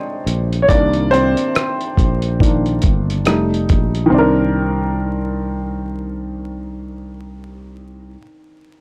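A swung 70 BPM groove in 4/4 and C minor drives this hazy, nostalgic lo-fi hip hop excerpt, where a dusty, compressed sampler-style kit with a thumpy kick, hi-hat and rim click plays from 0.3 to 4.1 seconds alongside a woody, slightly detuned upright piano that solos over Bb7, Cm9 and F9 chords through a cassette-tape haze, while a growly fretless electric bass sustains low notes up front, and the dry, gritty recording carries a layer of vinyl crackle.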